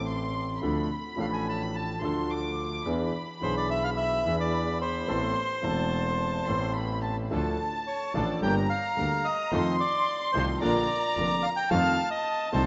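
Loosely rubato in 4/4 at around 108 BPM, this sultry, tense tango fragment in A harmonic minor is cut from a longer piece. A reedy, dark bandoneon enters at 1.2 seconds, sitting up front to carry the melody, while a chamber violin section plays an intimate second line high above with soft attack and light vibrato, bowed sul tasto. Underneath, a concert grand piano gives open accompaniment with a deep bass register, and a distant solo double bass bows the low end with an intense, clear vibrato. At 7.3 seconds the music moves into a new section as the harmony shifts from Dm through Gm, F7 and Bb and back to F7, and a lush, focused studio string section adds very quiet stabs. A moderate hall reverb lends the whole a roomy glow, though the rough home-demo mix keeps the top end dull and muffled.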